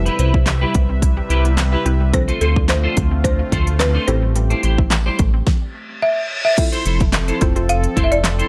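Energetic and driving, this dance-pop excerpt moves at 108 BPM in a straight 4/4, cycling through Cmaj7, Dm7 and Am7 before landing on Fmaj7 at 6.6 seconds. A woody, rustic marimba struck with medium hard mallets carries the melody with a digital delay, while a clean, dark, picked electric guitar plays a riff through ensemble chorus. Underneath, a round analog bass sits deep and up front, and an overdriven pop drum kit with a punchy kick, fat snare and crisp hats drives the groove, with its own crash and handclaps. Sidechain pumping makes a hollow, warbling square pluck, a bright sweeping pad and a lush unison pluck breathe with the beat; that unison pluck adds delayed arpeggios in the background until 5.4 seconds. A reverse cymbal rises into the new section at 6.6 seconds, and a very quiet, close group handclap joins at 7.1 seconds, all within a dry mix.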